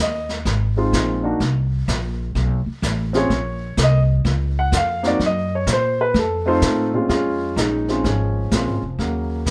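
Set in a moderate club reverb, this short cut from a longer jazz piano trio piece carries a late-night, cool mood in Bb minor at 126 BPM, swinging in 4/4. The concert grand piano sits up front with a warm, deep-bassed tone, taking a solo from 0.0 to 7.1 seconds, while the woody pizzicato upright bass, also close, grounds the harmony through chords like Fm7, Bbsus2, Gb and F7. Brushed drums enter at 0.3 seconds, sounding distant and roomy with a boomy kick and rolled-off top, before the passage moves to Bbm7 and Ebm7 near its end.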